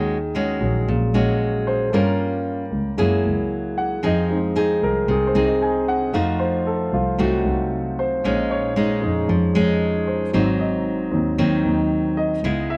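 Intimate and melancholic, this bossa nova fragment, cut from a longer piece, features a natural, warm grand piano soloing from start to finish over a progression of minor-seventh, half-diminished and dominant chords. Up front, a classical nylon-string guitar is fingerpicked, with audible finger squeaks. Beneath them, a single bowed double bass played con sordino sounds dark, veiled and distant, with vibrato. The sound is dry and close, like a 1970s studio recording.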